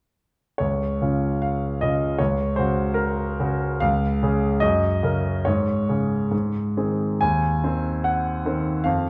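Warm and hopeful, this excerpt from a romantic character piece for solo piano in Db major moves with a rubato 2/4 lilt around 66-78 BPM, its clear concert grand sitting up front with deep bass and long sustain from 0.6 to 9.1 seconds as the harmony passes from Db through Gb and a suspended Ab before settling on a diminished chord, all bathed in the wet reverb of a recital hall.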